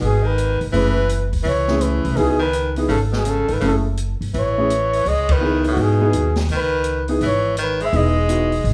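A bucket-muted trumpet carries the veiled, breathy melody with light vibrato and scooped notes, set back in plate reverb, while an edgy, forceful tenor saxophone plays a low second line over woody pizzicato upright bass and an open jazz kit with dark cymbals and a boomy kick. This smoky, cool small-group swing and bop excerpt moves at 167 BPM in C# minor, and a clear grand piano with audible action noise joins at 0.7 seconds to comp through minor ninth chords. The band hits a shared accent at 5.2 seconds, all within a moderately live studio room.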